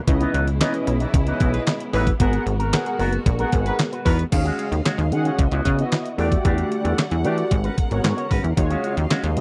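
Danceable and late-night, this early-eighties boogie funk excerpt rides on a detuned 8-bit drum machine with a thumpy kick, handclaps, hi-hat, snare and crash, up front beside a punchy, plucky analog bass. A bright, twangy electric guitar with an envelope filter and subtle chorus plays a riff, while round, dark synth brass with chorus and vibrato fills in the accompaniment over lush bowed strings that sustain chords in the background. A tight horn section adds a second line with octave doubling from 1.5 to 4.2 seconds, all captured in a dry, close studio sound as minor ninth and eleventh chords drift by.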